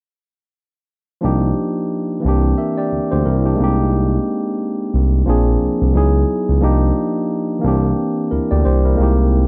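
R&B and neo-soul with a sultry, late-night mood at 89 BPM in C minor, swung on the sixteenths, where a bright, barky tine electric piano, lightly overdriven through a combo amp, plays chords from Cm11 through Abmaj9/C, Bb9 and Dbm11 to C7b13 over a smooth, mellow sawtooth-and-triangle synth bass, both up front from 1.2 to 9.5 seconds in a dry, close 1970s-style studio sound, cut from a longer piece.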